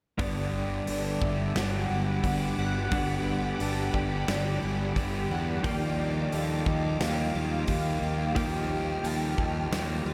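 A fuzzed, round electric bass sits up front beneath crunchy overdriven and clean reverse-reverb guitar riffs, a velvety warbling synth lead, a phased string-machine viola pad, a shimmering twelve-string acoustic joining at 0.9 s and a punchy big-room drum kit, all in a blissful, wistful shoegaze and dream-pop excerpt soaked in lush hall reverb as Gmaj7 gives way to Ebmaj9 at 5.6 s.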